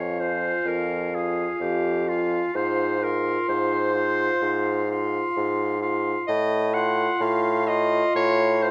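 Moving in a rubato 4/4 at around 64 BPM, this slow romantic movement for wind quintet unfolds in F minor with a solemn, melancholic mood, and it is cut from a longer piece. An airy silver concert flute carries the melody high between Ab5 and C6, its straight, tongued tone set at a distance. The oboe holds a second line on F5 with a soft attack and a roomy, far-off quality, while the up-front clarinet fills in accompaniment from F4 to Gb5. A mellow French horn sits in the background on F4. Beneath them, a clear bassoon with light vibrato anchors the bass between F2 and A2, sitting near the front with the clarinet. The harmony moves from Fm to Fm/Ab at 2.5 seconds and brightens to F/A at 6.3 seconds, all within a moderate large-studio reverb across the 8.7-second passage.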